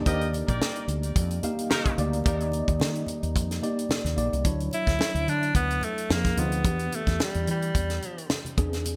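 An up-front, tight funk drum kit with a high-tuned snare drives a swung sixteenth-note groove at 109 BPM for this breezy, upbeat 1980s jazz-funk pop excerpt, alongside very quiet, soft-handed congas, a round, woody fretless bass, a worn, slightly out-of-tune electric piano with overdrive and lush chorus, a deep, moody pad under the opening Ebmaj7, and a brief, vintage horn line with digital delay before an edgy, forceful alto saxophone takes the melody at 4.7 seconds over Dmaj9, Fm7 and Em7, all in a bright digital production with light small-room reverb.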